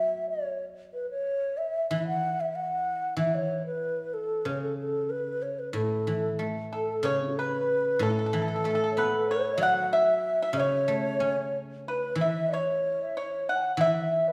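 Festive and pastoral, this excerpt of Chinese traditional chamber music puts a hollow, airy low xiao up front on the melody, with vibrato and tongued notes, over a ringing, silvery guzheng plucked with fingerpicks in a lower register. At 6.7 s a dry, percussive pipa joins on a second line, alongside a very quiet, reedy low xiao with a crisp attack and rolled-off highs. A moderate recital hall reverb gives the small ensemble a natural sense of space.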